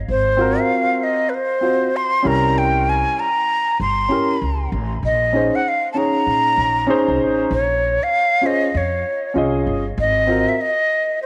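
A woody, thumpy pizzicato upright bass opens this mellow, smoky jazz-hop excerpt in Bb minor at 97 BPM with a swung feel, soon joined at 0.1 s by an up-front, breathy flute with vibrato, tongued and expressive, colored by cassette tape and analog delay, while a dark, mellow baby grand piano with long sustain moves through chords such as Ab13, C7b9 and Bbm11, all set in a lush hall reverb on a homespun cassette recording, with the flute lingering until 11.3 s.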